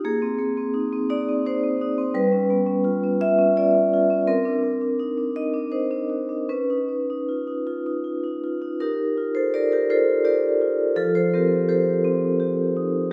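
Flowing and playful, this contemporary classical piece for solo vibraphone, cut from a longer work, sets metallic, ringing tones from medium hard mallets, shaded by a medium motor vibrato and heard up front, in a rubato 3/4 lilt through rich extended chords, moving into a new section at 8.8 seconds while the wet reverb of a recital hall surrounds it.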